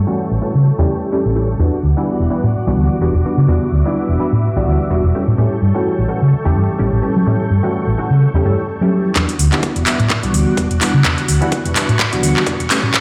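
Sensual and funky, this cut from a longer filtered disco house track grooves at 127 BPM in E dorian with a swung 16th feel, moving between A7 and Em9. A lush, vintage string machine holds sustained chords under a dark, round hollow-body electric bass sitting up front and a punchy sawtooth polysynth comp with chorus, phaser and cassette-tape color, all pumping and softened by filter sweeps, while a very quiet, distant egg shaker enters at 1.6 seconds. At 9.2 seconds a punchy electronic kick and a tape-warmed house kit with handclaps and metallic hats come in with a drum fill and build-up, all in a stone-room echo that feels like a big sound system in a bare space.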